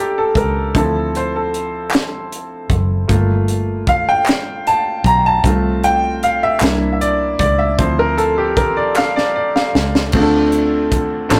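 A rough rehearsal-room recording with tube saturation and moderate reverb frames this slow, reverent and hopeful gospel passage in 6/8 at 51 BPM, where a bright, woody upright piano with audible action noise sits up front as the soloist over C7, Dm7 and Gm7 chords, a dark, foam-muted electric bass holds a round low end, an acoustic drum kit with a punchy kick and a high-tuned snare enters at 0.4 s and plays a fill from 9.0 s, and close human handclaps join at 1.9 s.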